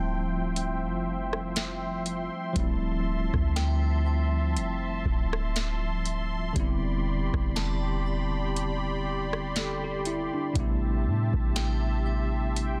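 Longing and sensual, this slow contemporary R&B fragment with a gentle sixteenth-note swing sets a bell-like tine electric piano and a smooth, detuned sawtooth pad with chorus over a deep, sine-clean 808-style bass, while a booming, dry analog drum machine with crisp snare and metallic hats joins at 0.6 seconds and a crystalline FM synth bell, treated with chorus, phaser and digital delay, glimmers in the background through a dense, heavily limited mix moving from Dm11 to Am11/E and Am7.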